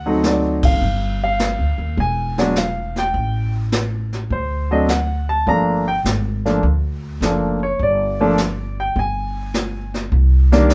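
Moody and cool, this short jazz piano trio excerpt swings in a small, live room, with a clear, up-front concert grand carrying the melody over a woody, growly pizzicato upright bass, while a brushed drum kit with dark cymbals and a boomy kick enters at 0.2 seconds, the band hits an accent at 0.5 seconds, and the chords drop away at 9.0 seconds before the harmony lands on a minor ninth chord.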